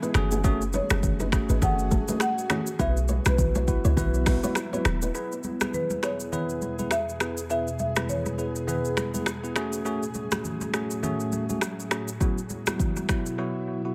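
A lilting 4/4 groove at 102 BPM, swung on the sixteenths, drives this joyful, sunny afrobeats excerpt in E major, with a produced afro-pop drum kit up front: a deep kick, metallic hi-hats, finger snaps, rim clicks and shaker, all tape-toned and touched with analog delay, plus bright, thin-skinned congas in the background. A clean, boomy 808-style bass with a fast attack and dark decay anchors the low end until 5.1 s, alongside a dark, fingerpicked flamenco guitar riff set back in the mix with analog delay. A bell-like, bright tine electric piano carries the accompaniment throughout, while an ethereal, airy pad holds mellow sustained chords through ensemble chorus and its own reverb. From 0.8 s to 9.5 s a woody, smooth marimba played with medium mallets sings the melody, echoed by analog delay. The harmony moves from F#madd9 to Bsus4, settles on E in the second section, then returns to F#madd9 and Bsus4 before a brief break at 13.4 s, all within an echo-heavy mix with light reverb and digital ambience.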